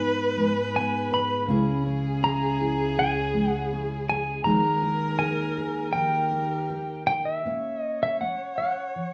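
Intimate and heartbroken, this brief excerpt from an acoustic folk-pop ballad in 4/4 opens on a fingerpicked, full-bodied nylon-string guitar with audible finger squeak and a single rich, focused viola with vibrato, over floating, distant chamber strings that hold soft-attack chords until 7.4 seconds, while a clean, compressed pedal steel guitar enters up front at 0.8 seconds, carrying the high melody with fingerpicks, slide and volume swells, all heard live in one room through a wet large-studio reverb with a gently rolled-off top.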